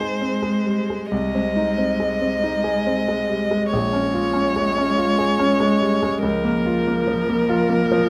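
Classical slow romantic piano trio movement in a tender, rubato 3/4, where an up-front bowed violin carries the melody with vibrato, portamento and a soft attack, a cello sings a quieter second line in the background with the same expressive vibrato and sliding touch, and a smooth, vintage-toned grand piano supplies the accompaniment, all captured by close, detailed microphones in a moderate recital-hall reverb across this brief 8.1-second passage from a longer piece.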